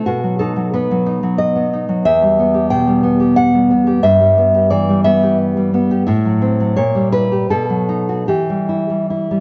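Melancholic and wistful, this romantic piece for solo classical guitar moves in 3/4 with a rubato feel, drifting between roughly 72 and 92 BPM in E minor, tuned slightly low to A4 = 435 Hz. A nylon-string guitar carries everything alone from 0.0 to 9.4 seconds, ranging from E2 up to G5, its fresh strings lending a warm, acoustic character to a classical, thumb-plucked tone that sits up front. The harmony opens on B, settles into Em and Em/G, then darkens through F#m7b5/A and A#dim7 before B7 resolves back to Em at 8.3 seconds. A moderate recital hall reverb lends the playing a gentle sense of space, while the sound stays soft at the top end, with nothing above 7.5 kHz. This is a short passage cut from a longer piece.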